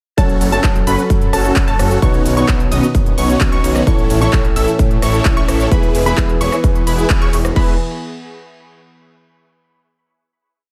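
A dry, up-front mix opens straight into a triumphant, uplifting festival progressive house drop that runs to 7.6 seconds, then gives way to a final chord. A punchy, layered electronic kick drives a four-on-the-floor pulse, while a tape-warm big-room drum kit, re-recorded in a large room, adds crisp programmed hats, claps on the backbeat, rim clicks, cabasa, ride and crash. Underneath, a thick detuned saw bass with chorus and saturation drives in eighth notes, and a huge, compressed supersaw carries the dotted-rhythm riff, both pumping against the kick with tape echo on the lead. High above, a punchy unison pluck doubles the chords an octave up in arpeggios, while a dark, mellow baby grand piano sits in the background with held chords and syncopated pushes. A very quiet, evolving pad with slow attack and long release fills out the harmony as the band hits an accent at 7.1 seconds over the F#m, Badd9, A and E progression.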